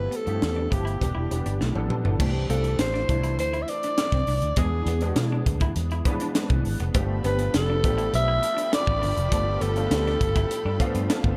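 A raspy, vibrato-laden alto saxophone carries the melody up front in this bittersweet, nocturnal slice of polished 1980s jazz-funk pop at 101 BPM, over a punchy, gritty fusion drum kit with a high-tuned snare, a round, foam-muted fingered bass, an intimate grand piano with audible action noise and ensemble chorus, and a slightly broken-up guitar riff tucked in the background, while lush bowed strings enter at 7.0 seconds beneath the dark, small-room production, moving through chords from G13 and Em7 to C69, E7 and G9 with a drum fill at 1.6 seconds and a piano fill closing the passage.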